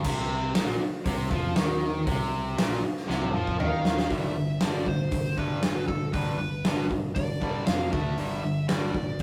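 Powerful and swaggering, this short hard rock excerpt drives in a straight 4/4 groove as an up-front, punchy arena drum kit, a growly picked bass and a stack of bright overdriven rhythm guitars, one of them hollow-bodied and a double-tracked distorted one dropping out at 4.1 seconds, pound out riffs over a rough rehearsal-room sound with faint mains hum, while a nasal lead guitar with a parked wah enters at 3.6 seconds, just after a drum fill begins, to carry the melody as the chords move from Bbsus24 to G.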